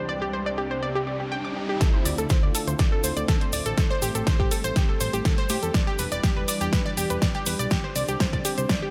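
Progressive house at 122 BPM with a bittersweet, dreamy mood, this short excerpt opens on a lush, detuned unison pad holding chords from Csus2 and a round, up-front analog pluck playing arpeggios through chorus and tape echo, with a riser in the background before a punchy layered kick, a big-room kit with a huge snare and hi-hat, and grainy close cabasa arrive at 1.8 seconds for a build-up and drum fill over Dm7, Am7 and Em7, joined at 2.1 seconds by a fat, saturated analog bass, the pad, pluck and bass pumping to the sidechain in light digital ambience.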